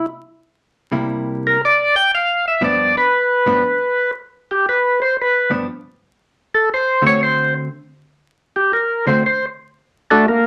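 A percussive tonewheel organ opens this greasy, swinging jazz passage, cut from a longer piece, and carries the melody as a solo over a 118 BPM swing in 4/4. Its tone is full and clean, with a distinct key click and second-harmonic percussion, turned slowly through a rotary speaker and placed up front. At 0.9 seconds a hollow-body electric jazz guitar joins as accompaniment, picked, compressed and warm, sitting close in the mix before dropping out at 9.2 seconds. The harmony moves from C7 to G7 and then D7 across the short stretch. A wet club reverb and a layer of vinyl crackle give the sound a smoky, lived-in feel.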